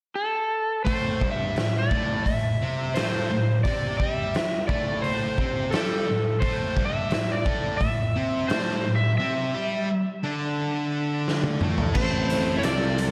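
A brooding, smoky blues rock and southern rock passage opens with an overdriven slide guitar at 0.2 s, played with fingerpicks and carrying the melody in a dark, upfront tone with slapback echo. At 0.9 s a thick, double-tracked fuzz guitar enters with a distorted riff, joined by a raw garage drum kit with a punchy kick, a medium-tuned snare and a rolled-off top. A drum fill leads into a new section at 12.0 s, where a tuba takes the bass with light vibrato and scooped notes, close-miked and solo in character. Just before that, a lightly driven lead guitar slips in behind the others with a slightly broken-up, compressed second line. Concert hall reverb gives the trio a big arena sound, and the fragment is cut from a longer piece.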